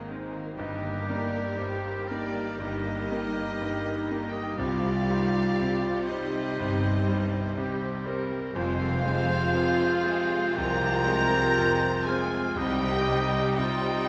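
A chamber violin section carries the melody with an expressive, soft-attacked vibrato, while a clear oboe, a background clarinet and a smooth symphonic violin section play second lines alongside it in this moving, uplifting cinematic passage at a rubato 60 BPM in 4/4, cut from a longer piece. A brilliant concert grand piano with deep bass and a very quiet viola section supply accompaniment, a French horn section holds warm sustained chords, and a ringing, fingerpicked harp adds arpeggios as the harmony moves from Abadd9 through Eb/G, Cm and Fm before returning to Cm. Lush cello and distant double bass sections enter at 0.6 s and stop at 13.4 s to anchor the bass, all set in a wet recital hall reverb of a church or concert hall.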